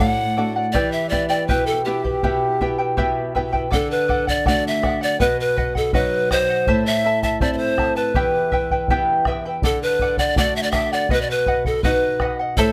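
A breathy, close-miked bamboo pan flute with a crisp chiff carries a wistful, melancholic Andean folk melody in E minor at 81 BPM in a straight 2/4, over shimmering fingerpicked charango with bright double strings, a warm fingerpicked flamenco guitar with audible finger squeak, and a deep, dark bombo in a live room, all in light reverb as the chords move from D and Em to D, B, Am, Em, D and B in this 12.7-second excerpt from a longer piece.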